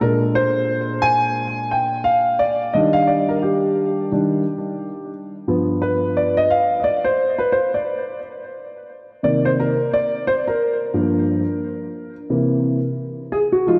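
Soaked in a lush hall reverb that gives the mix a dreamy haze, this mellow, cool hip hop fragment at 88 BPM in C minor, with a swung 16th feel, features a solo concert grand piano, dark and boxy with deep bass, sitting up front with delay as it moves through chords such as Bb9, Ebmaj7, G7 and Cm7 over 13.8 seconds.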